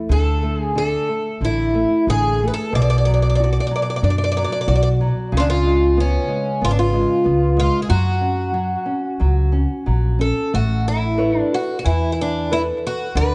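A small, fingerpicked nylon-string guitar opens this nostalgic, tender fado-style ballad, with a picked twelve-string acoustic guitar and a pizzicato upright bass joining almost at once, at 0.1 seconds. The twelve-string carries the melody up front, its fresh strings sounding bright, boxy and shimmering in an octave-doubled parlour tone, touched by tape echo. The woody, steel-strung upright bass also sits forward, anchoring the loose, rubato feel in a low register beneath the warm nylon accompaniment. The harmony drifts through Dsus2, Bm, C#7 and F#5 before opening onto Aadd9 at 10.5 seconds, where a new passage begins. Light reverb and a dark, warm production cap the top end, and the fragment, cut from a longer piece, runs to 13.3 seconds.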